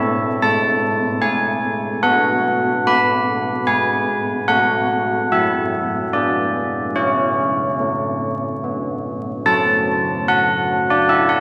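Classical bell tune in three, serene yet festive, played solo from start to finish by a set of old church bells with a bronze, clangorous ring, a minor-third overtone and a beating shimmer, sitting mid-forward and up front. The bells sound out through a long, wet church reverb, with vinyl crackle beneath, and the tune moves into a new section at 9.5 seconds before this cut from a longer piece ends at 11.4 seconds.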